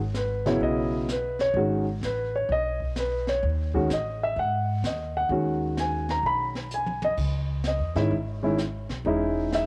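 Heard through a homespun cassette recording with moderate spring reverb, this cool, swinging jazz piano trio excerpt in G# minor at 128 BPM sets an intimate, up-front grand piano with audible action noise on the melody over a woody, thumpy pizzicato upright bass on gut strings and a dark, smooth brushed kit with a boomy kick and high-tuned snare, which plays a fill at 6.7 seconds before the harmony moves from G#m7 to C#m at 7.2 seconds.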